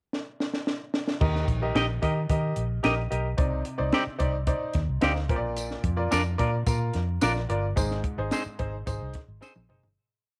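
A straight, danceable backbeat soul groove drives this short, uplifting piece in a 1960s style. It opens with a drum fill on a compact cocktail kit whose high-tuned snare, punchy kick, hi-hat, toms and crash cymbal sit up front with a dark, rolled-off top. At 1.2 seconds the verse begins as a vintage foam-muted fingered electric bass plays a round, amped, melodic syncopated line full of muted ghost notes and chromatic approach notes. Alongside it, a clear baby grand piano adds close-voiced rhythmic chords with grace notes and audible action noise, and from 1.8 seconds a bright, clean picked electric guitar adds short chops on the backbeat through tape echo. A jingly tambourine joins at 5.6 seconds, striking every beat at a lower level in a live room. The piece fades out from 7.8 seconds, with another drum fill at the close, heard in a small room.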